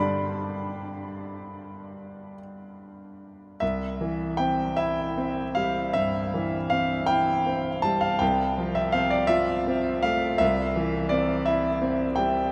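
A clear, intimate grand piano plays alone through the whole 12.5 seconds, sitting up front with its natural tone and audible action noise. This is a romantic classical nocturne in C major, moving in a slow, rubato 12/8 at roughly 47-57 BPM counted in dotted quarters. The mood is nostalgic and dreamy, and the part ranges from C2 to C6. The harmony opens on G, settles on C at 3.6 seconds as a new section begins, then moves through F over C at 8.2 seconds before returning to C. A huge, wet ambient reverb with a 7.0-second decay places the piano in a vast, echoing space, and the clip is cut from a longer piece.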